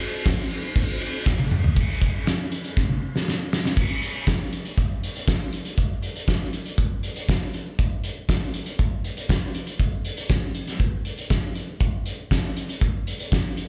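Heard through a club PA with a light room reverb, this live rock snippet, cut from a longer piece, centres on a loose indie drum kit sitting up front with a pumping room sound. At 119 BPM in a straight 4/4, the fat snare, punchy kick and toms drive a dark, cathartic mood, while the dark, rolled-off crash, ride and hi-hat keep the top end warm. Drum fills arrive at 1.3 and 2.8 seconds, each leading into a new section before the kit settles into the longest stretch of the groove.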